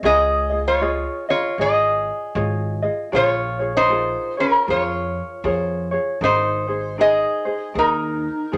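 A metal-body resonator slide guitar carries the melody up front, its metallic, nasal slide tone picked with fingerpicks over a light, thumb-plucked ukulele and a woody, thumpy upright bass on gut strings. This languid, relaxed Hawaiian excerpt sways at 78 BPM with a swung feel, moving from Dbadd9 through Bbm7 to Abadd9 in a moderate studio reverb. At 7.8 seconds an airy, hollow bass bansuri slips in with a tongued, vibrato-laden second line, close-miked and warm with bamboo character.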